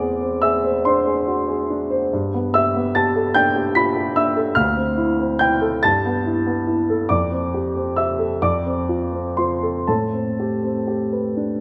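Classical impressionist solo piano, this short passage has a wistful, nocturnal mood and drifts in a slow 6/8 at roughly 39-50 BPM counted in dotted quarters, with free rubato pacing. A single grand piano carries everything from 0.0 to 11.6 s, its tone warm and natural and placed up front, ranging from D2 low in the bass to B6 high in the treble. The harmony is lush and colorful, opening on an Eaug7 before moving through G69, Dm9, G69 again and F69, settling briefly on a plain F and closing on a hazy Am11. A moderate concert-hall reverb, with a 2.4-second decay, lends the sound an airy, spacious halo. Cut from a longer piece, the passage feels like a fragment of a dreamlike reverie.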